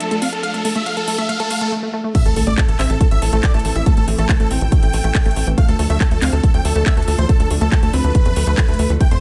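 Uplifting trance at 140 BPM in a straight 4/4, soaring and driving, this short cut from a longer piece opens on a build-up where a riser and a swell drive toward the drop at 2.1 seconds, where an impact lands. Filter sweeps on the pluck and the lead run through the first moments, and a brief break comes just before the chord moves from Dm to Am. A huge, euphoric supersaw lead carries the melody, detuned and bright, with sidechain pumping and dub echo, while a catchy, plucky unison lead with vibrato and a moving notch traces a second line higher up in the background. A lush unison pluck plays arpeggios with a short decay, and a thick, full-bodied pad holds sustained chords behind it with chorus and a slow attack, all pumping against the beat. At the drop a punchy, tape-warm electronic kick sits up front, joined at 2.3 seconds by a tight, nasal sequencer bass that evolves as it drives. A house kit adds crash cymbal, handclaps and metallic hats, filtered thin and re-recorded in a small room, and a light reverb wraps the mix as the harmony returns to Dm at 5.6 seconds.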